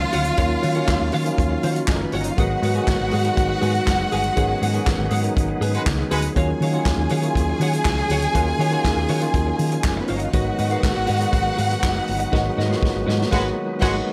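Light reverb and a small-room ambience frame this driving, sultry disco excerpt at 121 BPM, which moves between Ebm9 and Abm7 chords. A bowed violin section sits up front, expressive and rich with vibrato, as it carries the second line over a round, dark hollow-body bass played with the fingers. The vintage acoustic kit has a punchy kick, a medium-tuned snare, handclaps, hi-hat, crash and dark cymbals with a rolled-off top. Behind them, a picked, compressed electric guitar shimmers through lush chorus, a tine electric piano adds clean accompaniment, and a reedy, bright tonewheel organ holds sustained chords with key click and a fast rotary speaker. The whole band accents together, a distant, roomy horn section lands brief stabs at 5.7 and 13.3 seconds, and a drum fill begins at 12.3 seconds.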